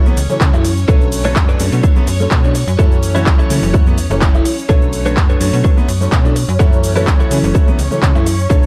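A straight 4/4 groove at 126 BPM drives this funky, nostalgic excerpt of filtered disco house, anchored by a punchy, overdriven electronic kick sitting up front and a house kit of cabasa, handclaps and hi-hat that sounds re-recorded in a large room, with sidechain pumping on its hats and percussion. A snappy, metallic FM bass with a slap-like attack enters at 0.1 seconds, under a brilliant baby grand piano run through a phaser and a clean, direct-recorded electric guitar riff thickened by analog chorus, both breathing with sidechain pumping. In the background, a swirling, warbling string machine with vintage 12-bit grit holds sustained chords as the harmony moves between F#m7 and Bm9, all set in a dark digital ambience.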